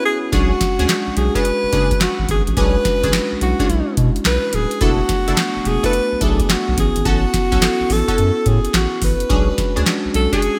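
A clear, close-miked alto saxophone with light vibrato and scooped notes leads this bouncy, confident new jack swing cut at 107 BPM in B dorian, opening with a brief band accent, over bell-like tine electric piano, punchy, detuned polysynth stabs with chorus, a thick, saturated sub bass, and a booming analog drum machine whose handclaps, metallic hi-hat, deep kick and tonal snare carry gated reverb, in a bright 1980s-style digital R&B production swung on the 16ths.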